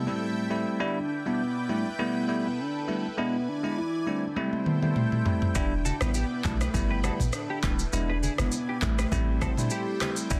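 Afrobeats with a smooth, mellow feel, this passage from a longer piece opens on a round, dark synth lead carrying the melody with chorus and delay, a bell-like tine electric piano sitting bright and up front, and a lush, detuned unison pad holding sustained chords under chorus and phaser. A drum fill brings in the overdriven, electronic afro-pop kit at 4.4 s, with its deep kick, handclaps, rim click, shaker and toms. At 5.6 s a twangy, clean electric guitar riff with chorus and delay arrives alongside a punchy sine sub bass and very quiet, close, dry congas, all set in digital ambience with a dense, heavily limited modern master.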